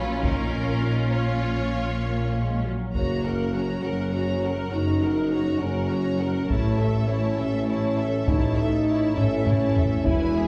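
Heard from further back in a wet scoring-stage reverb, this adventurous, heroic cinematic orchestral cue moves at 67 BPM in 6/8, with a smooth, distant violin section singing the melody above a lush, focused second violin line, intense viola accompaniment, tight, mellow French horn chords, a rich, close cello section and an even double bass, while heavy-stick taiko drums drive from 0.2 seconds, a warm solo tuba deepens the bass from 2.9 seconds as the harmony moves from A#m to F# and then A, and a taiko fill arrives at 9.2 seconds.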